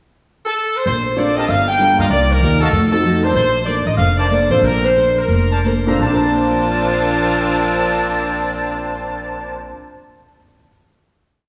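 Brassy and swinging, this short, complete big band piece opens with the edgy saxophone section alone at 0.5 seconds, its vibrato-laden, soft-attacked lines stated in four-part block voicing as a motif-based melody up front. The picked steel-string acoustic guitar and pizzicato upright bass come in at 0.9 seconds, the guitar strumming jazz chord shapes in four while the woody bass plays a two-feel line near the front of the mix. A present, polished grand piano with deep bass, long sustain and audible action noise sits in the background with syncopated, rootless comping, and the close-miked trumpet section adds tight, clear stabs in drop2 voicings. The tempo slows from 3.4 to 6.0 seconds, leading into a final chord held from 6.0 to 9.0 seconds. A lush concert hall reverb blends with small room ambience, giving the ensemble an intimate yet spacious sound.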